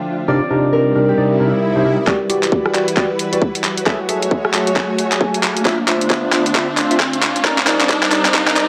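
UK garage in a two-step style, this short excerpt moves at 134 BPM with a skippy, late-night swing. A concert harp opens with a ringing, fingerpicked melody that stops at 3.4 seconds. It sits over a breathy, warbling pad with chorus and a distant, bowed chamber string section, both pumping from the sidechain. Hollow, organ-like stabs with lush chorus and digital delay enter at 0.3 seconds and move through the chords, from Cm9 to Em9, F#m9, Dm9 and back to Cm9, with a filter sweep running over them from 2.1 seconds. A swell rises in the background before a tight electronic kick and an up-front garage kit with bright hats, handclaps and rim clicks arrive at 2.1 seconds, launching a build-up with a drum fill and a riser under a dark production with moderate plate reverb.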